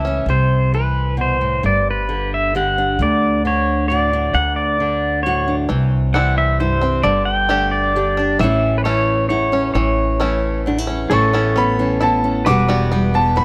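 A light reverb surrounds this nostalgic, pastoral acoustic folk piece in 3/4 at 133 BPM, cut from a longer work, with a clean, compressed pedal steel guitar up front taking a twangy slide solo full of volume swells from 0.3 to 11.1 seconds. Beneath it, a bright, fingerpicked nylon-string guitar with audible finger squeak provides classical-style accompaniment, a dark, woody pizzicato upright bass sits forward in the mix, and a percussive bluegrass banjo played with fingerpicks returns with arpeggios at 5.7 seconds. At 11.1 seconds a warm, intimate upright piano enters with a high melody, its action noise audible and its polished notes ringing with long sustain.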